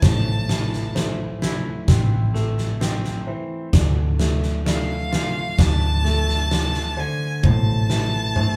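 A huge arena drum kit sits up front with a fat snare and punchy kick, anchoring this cathartic, brooding post-rock excerpt at a slow 65 BPM in A minor, and it closes with a drum fill from 7.4 seconds. A distant, bowed violin carries the melody with smooth vibrato, while a twangy electric guitar bathed in spring reverb plays arpeggios, joined by a soft, felt-muted upright piano whose arpeggios, with audible action noise, sit in the background. A dark, round hollow-body bass grounds the Am to Dm to Am progression, all captured as a band playing live in one room.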